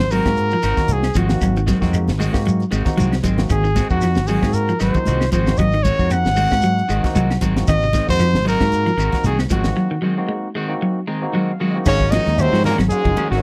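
A tight, dry funk kit with a high-tuned snare drives this joyful afrobeat cut at 115 BPM in 4/4, with a light sixteenth-note swing and Ab mixolydian harmony on Ab7. Round, dark fingered bass sits direct and amped alongside congas, grainy shekere and very quiet woody claves, while a clean picked guitar plays arpeggios, a twangy, slightly broken-up guitar adds stabs, and a barky, lightly overdriven tine electric piano comps and fills around a break from 9.8 to 11.9 seconds. A clear, punchy trumpet carries the melody close-miked, and at 11.9 seconds, as the chord moves to Ab7sus4, a forceful but very quiet second trumpet joins along with a veiled, cup-muted trombone section in the background, all in a small, dry 1970s-style studio sound.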